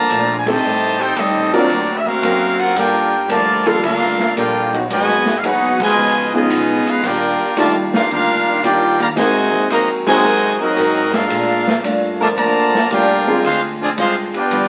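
Big band swing with a joyful, brassy mood, this short clip from a longer piece puts a brilliant trumpet section up front on the melody, carrying light vibrato and a soft attack, while a trombone section adds a second line and a mellow trombone section holds sustained chords in the background from 1.5 seconds. Underneath, a clear baby grand piano with audible action noise and a boxy, picked ladder-braced acoustic guitar share the accompaniment, as a woody pizzicato upright bass and a swinging drum kit with a punchy kick and ride cymbal sit further back. The whole band hits accents at 0.4, 5.7 and 10.0 seconds, and the sound carries the crackle of a very old 78 rpm record wrapped in studio reverb.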